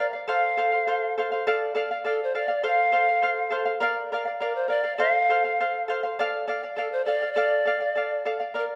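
Set in a straight 2/4 at 102 BPM, this short Andean folk cut from a longer piece carries an earthy, festive mood in D minor. A mellow, polished pan flute takes the melody from the start, its woody, airy tone softened by a gentle attack, vibrato and rolled-off highs, sitting up front between A4 and F5. Beside it, a fingerpicked charango supplies the accompaniment in the same register, its double strings giving a warm, shimmering, acoustic sparkle, with some of them octave-doubled. The harmony moves through F, Dm, F, Bb, F and back to Dm, and both parts play together from 0.0 seconds until the excerpt closes at about 8.8 seconds. A moderate recital-hall reverb, with a decay of 1.5 seconds, gives the pair a sense of space while keeping them close and present.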